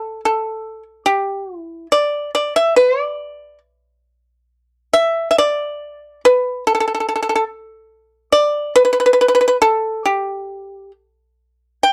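A solo pipa sits up front, its bright, percussive tone plucked with fingerpicks and kept dry and close, moving between G4 and G5. This short piece of Chinese traditional music, cut from a longer work, carries a serene, elegant mood. It is set in the D zhi mode at around 70 BPM in 2/4, but the beats fall unevenly and the pulse breathes freely in rubato. The pipa plays alone throughout its 11.9 seconds, with a new section beginning at 4.5 seconds. The acoustic sound has the intimate feel of a 1970s-style studio recording, touched by light reverb and tuned to A4 = 442 Hz.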